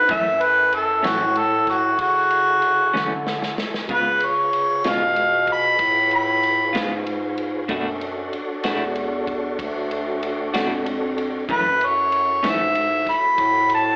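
A mellow harmonica leads this smoky, soulful slow blues in F# minor, its scooped, overdriven notes sitting up front yet sounding distant with a slapback echo. Beneath it, smooth tonewheel organ chords turn through a slow rotary speaker with chorus vibrato and key click, while a breathy bass clarinet plays the bass line with a soft, subtone attack. A twangy, picked clean electric guitar with tremolo and a big-band drum kit with a punchy kick, ride and snare enter at 0.1 s, the drums adding a fill at 2.9 s, over a 12/8 pulse at 63 BPM moving from F#m7 through C#7 and Bm7 back to F#m7, in a fragment of a longer piece that sounds like a live club gig heard through the venue's PA and an AM radio.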